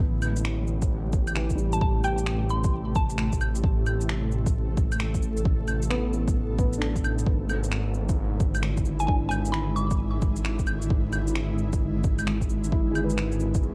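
Future garage excerpt at 132 BPM in A minor, ghostly and nocturnal, with a swung 4/4 groove built on an overdriven deep electronic kick and a layered, overdriven kit of cabasa, shaker, claves and finger snaps, while an up-front, menacing detuned saw bass with tube saturation sits under Am7 and E7/G# chords. An ethereal, airy pad with ensemble chorus and its own reverb sustains the harmony beside a soft, felt-muted upright piano in the background, its action noise audible and its notes trailing into dub echo, and the pad, piano and bass each pump with sidechain. A woody, round mallet-like synth pluck with chorus and delay offers brief high melodic phrases at 1.7 s and 9.0 s, set in a dark production flecked with vinyl crackle and lossy compression artefacts.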